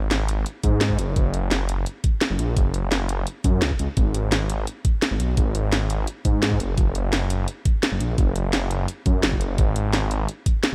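Soulful and lush, this short excerpt of liquid drum and bass moves at 171 BPM in a straight 4/4, sitting in G# minor. A swelling detuned saw bass opens at 0.0 s, its sawtooth unison layered with a sine, saturated and sustained with a fast attack and a filter swell that gives it an evolving, menacing edge as it spans F#1 to G#2. The drum kit joins almost at once, bringing a cracking snare and bright hats, electronic and layered, re-recorded in a small room and placed up front. An electronic kick drum arrives at 0.6 s with a knocking, produced punch, also re-recorded in a small room and sitting up front in the mix. The sound is dry and close, with little reverb, so the bass and percussion press forward together through the whole passage.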